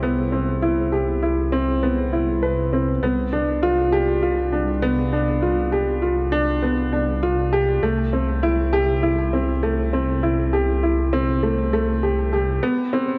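A clear, woody upright piano and a deep, rumbling detuned saw bass begin together in a luminous, tender piece of piano and strings electronica cut from a longer work. The piano carries a riff touched with delay and a short sustain, while the bass sits up front with a beating, saturated character beneath it, all set in a lush hall reverb. The bass stops at 12.6 seconds, leaving the piano alone until 13.2 seconds.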